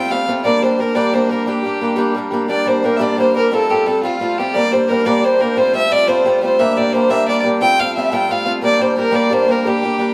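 Spirited, dark and lively, this Celtic jig in G dorian moves at 117 BPM in 6/8, cut from a longer piece, with a rich, focused fiddle up front carrying the melody with light vibrato over a bright, boxy, picked swing-style acoustic guitar whose finger squeaks come through as it alternates between Gm and F/G. At 2.5 s a mellow bamboo bansuri enters in the background as an airy second line, its crisp attack, vibrato and unsteady playing sounding distant. The band plays live together in one room, and the wet stone room reverb lends the whole performance an echoing space.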